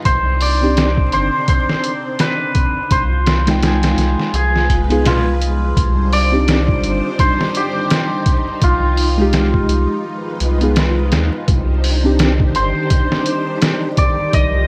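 A shimmering, ringing hammered dulcimer carries the melody through dub echo over muffled, pitched-down sampler drums with 12-bit grit, a round, deep analog bass, phased string-machine cellos, a reedy electric piano with tremolo and tape echo under a filter sweep, and an airy wind-like texture arriving at 12.4 seconds, in a brooding, smoky trip hop excerpt at 84 BPM in C harmonic minor, with swung 16ths, vinyl crackle, and the kick dropping out from 10.0 to 11.5 seconds.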